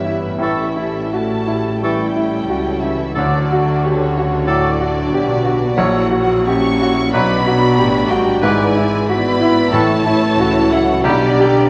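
This short orchestral classical passage opens with a bright, brilliant grand piano carrying the melody up front, joined at once by a full string body and horns in a lyrical, lush mood. Above the piano, dark violins sing a close, intimate line with light vibrato and a soft, sul tasto touch, while a second, more distant violin section adds a woody counter-line, and dark violas, warm cellos and double basses fill out the accompaniment and bass beneath a sustained cushion of dark French horns. Just after the start, a punchy solo oboe, an airy flute section and a mellow, roomy bassoon slip in with their own supporting lines. Soft-mallet timpani make two round, very quiet entries, first at 3.2 seconds and again near 9.7 seconds. The pulse breathes with rubato as the harmony moves from A7 through Bm and E7/G# to settle on A before closing on G/B. The whole sits in a wet scoring-stage reverb, coloured by a worn cassette-tape character whose warbling pitch drift lends a faded tint.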